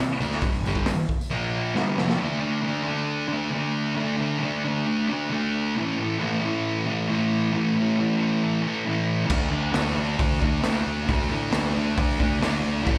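A jingly tambourine opens this swaggering, rowdy garage rock excerpt at 0.1 seconds, sitting close and dry in the background as a thick, double-tracked fuzz guitar riff arrives up front in a straight 4/4 at 135 BPM. Growly, punchy fingered electric bass and a raw acoustic drum kit, with its boomy kick, medium-tuned snare, hi-hat and crash, join briefly, and a drum fill leads into the next section at 2.2 seconds. From there the picked, distorted guitar carries the riff alone over power chords moving between D5 and A5. At 9.3 seconds the saturated, gritty drums return with a pumping small-room sound and rolled-off top, joined by the overdriven bass, and the tambourine comes back soon after. The whole thing sounds like a live club gig heard through the venue's PA, with light reverb and a studio ambience.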